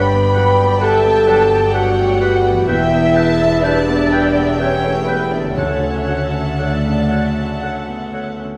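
Hopeful and uplifting, this brief cinematic excerpt of an emotional film score moves in an unhurried, rubato triple metre, with a soft-edged, floating violin section carrying the melody over lush, vibrato-rich darker violins and violas, a tongued flute section, a clear clarinet and a distant oboe. A brilliant concert grand piano with deep bass and long sustain anchors the accompaniment alongside ringing, fingerpicked harp arpeggios, mellow French horn chords, and pure, sul tasto cellos and double basses. Very quiet, articulate timpani enters at 5.6 s and stops at 7.1 s, while the whole ensemble blooms in a wet recital hall reverb.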